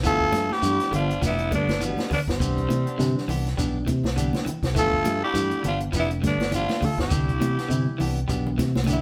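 Joyful, funky afrobeat at 102 BPM in G mixolydian, where a raspy, gritty tenor saxophone carries the melody up front over a growling, breathy alto saxophone line, a very quiet bucket-muted trombone section, a reedy, tremolo-laden electric piano with a fill at 3.6 seconds, arpeggios from a slightly broken-up electric guitar, stabs from a clean electric guitar, a dark, round fingered bass, a compact cocktail kit with a high-tuned snare, a punchy kick and a fill at 8.7 seconds, a grainy shekere and damped congas, all played live in one room under a wet studio reverb.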